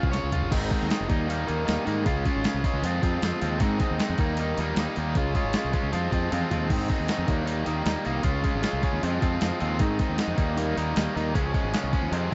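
Dark, lightly reverberant production frames this carefree, jangly indie rock clip at 155 BPM in 4/4, where an up-front, double-tracked overdriven electric guitar plays a picked, compressed riff over Db, Ab, Eb and Fm chords, a growling, bright fingered bass adds punchy overdriven low end, and a sampler-style 12-bit drum machine with a thumpy kick and medium-tuned snare drives it all, dropping short fills at 0.1 and 6.3 seconds.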